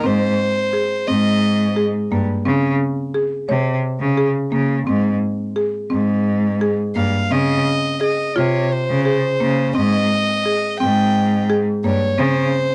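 Contemporary chamber music in an uneven 7/8 meter, restless and shimmering, this short cut from a longer piece sets a buzzing, woody marimba played with medium mallets spinning arpeggios throughout, while a bright, biting cello with vibrato carries the bass line up front. A warm, airy violin played sul tasto floats a pure melody over them, heard briefly at the start and returning from 7.0 seconds until the end at 12.7 seconds. Plate reverb colors the violin and marimba within a moderate studio room, and the chords move between Ab and Db harmonies, touching Dbmaj7 and Abmaj7.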